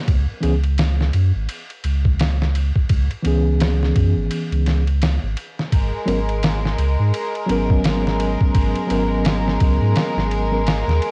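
A swung sixteenth-note trip hop groove drives this hypnotic, melancholic excerpt. A gritty, pitched-down sampler-style kit with a thumpy kick, medium-tuned snare and ride cymbal sits compressed and up front beside a deep, round sine sub bass, while a mellow tine electric piano adds accompaniment through tremolo, tape echo and lo-fi 12-bit sampler texture. At 5.7 seconds the harmony shifts from C#m7 to G#m11 and a distant, floating violin section enters with soft-attack bowed chords, its cassette-tape haze shared with the drums and piano in a dry home recording.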